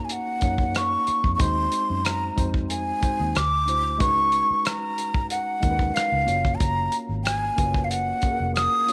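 Bathed in a moderate spring reverb, this short cut from a lush 1970s-style soul piece moves at 92 BPM with a bittersweet, smooth mood: an up-front, breathy metal flute with vibrato and a soft attack carries the melody over a worn, slightly out-of-tune tine electric piano with light overdrive, a mid-forward soul drum kit of hi-hat, tight kick and rim click, and a dark, round, foam-muted fingered electric bass that enters at 0.4 s, as the harmony travels from Ebm7 to Gbmaj7.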